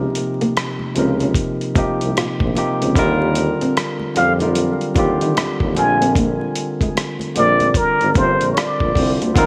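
Vinyl crackle and a light studio reverb frame this smooth, soulful neo-soul and R&B fragment, cut from a longer piece and moving at 75 BPM in 4/4 with a swung sixteenth-note feel. A bright, barky tine electric piano sits up front, lightly overdriven through a combo amp, laying down Dbmaj9, Ebmaj7 and Bb69 chords, while a warm tuba carries the bass from a distance, roomy and jazz-inflected, with soft attacks, scooped notes and a light vibrato. From 0.2 seconds a dusty, sampler-style drum kit joins, compressed and gritty with a thumpy kick, hi-hat and rim click, alongside a small, very quiet fingerpicked nylon-string guitar as a second line. Very quiet congas with thin, medium-tuned skins and soft hands enter at 0.8 seconds in a live room. At 4.2 seconds a close-miked trumpet with a plunger mute takes the melody up front, mellow and breathy with a whispered, intimate wah-wah tone and gentle vibrato.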